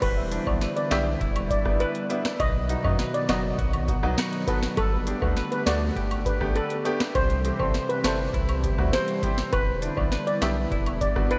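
A booming analog drum machine sits up front in this sultry, bouncy dancehall groove at 101 BPM in E minor, its deep kick, crisp snare, rim click, metallic hi-hats and crash cymbal driving a straight 4/4 feel. Above it, a mellow steel pan carries the lead melody with a shimmering, smooth tone struck by soft rubber sticks, trailed by analog delay. A round analog bass with a fast attack sits lower in the mix, while a hollow, flute-like pad holds airy sustained chords with chorus and a sidechain pumping motion. In the background, a clean, twangy electric guitar picks compressed arpeggios through subtle chorus and delay. A brilliant grand piano joins at 0.3 s with intimate accompaniment, its action noise audible, and a very quiet woodblock and cabasa add acoustic texture. The harmony moves through Em7, B, Gadd9 and C before returning to Em7, and a huge ambient reverb soaks the whole mix in a dreamy haze across this passage cut from a longer piece.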